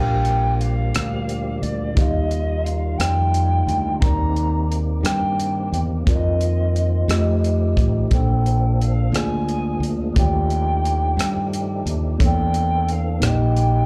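An alto ocarina carries the melody from the first moment, its clay tone pure and expressive with vibrato and tongued notes, set back at a distance over a slow, jubilant gospel groove in Bb major at 59 BPM in 6/8. Underneath it, a mellow tine electric piano plays clean, direct accompaniment touched with slapback echo. A fat tonewheel organ sits in the background holding sustained chords, with key click, chorus vibrato and a slow rotary speaker. A punchy fingered electric bass sits up front alongside a dry, acoustic funk kit that enters at 0.2 s with hi-hat, a tight kick and rim click. The harmony moves through rich colours such as Ebmaj9, F7sus4, Bbmaj9 and Ebmaj9#11, lending the cut a hopeful lift. The whole 13.9-second passage, taken from a longer piece, has the feel of a live club gig heard through the venue's PA, with small-room ambience and club reverb.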